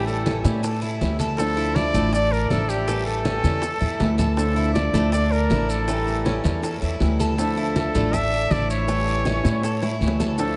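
Cuban son and guajira at 160 BPM in D harmonic minor, this sultry, danceable excerpt rocks between A7 and Dmadd9 while a clear, punchy trumpet with vibrato carries the solo melody up front, trailed by a diffuse ambient delay. Beneath it, a woody, thumpy upright bass sits forward, a boxy fingerpicked swing-style acoustic guitar comps, and a bright, metallic Cuban tres spins arpeggios that also carry the delay. Very quiet congas and round bongos, with a raspy guiro and grainy maracas in the background, fill the groove, including drum fills at 3.4 and 9.8 seconds, all set in a dreamy, reverb-soaked mix with a soft top end.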